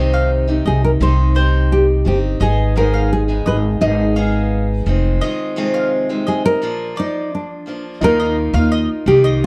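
A straight 4/4 pulse at 86 BPM carries this easy-going, heartfelt pop excerpt in Eb major, where a growly pizzicato upright bass and a dark, picked steel-string acoustic guitar with audible finger squeak sit up front, a woody mandolin adds double-string arpeggios, and a fingerpicked nylon-string guitar carries the deep classical-toned melody from 0.7 s over Cm, Abm, Fm7 and Bb; after a break from 5.2 s, a natural-sounding upright piano joins in the background at 8.0 s on an Ebsus2, all within a dark, warm production with light reverb.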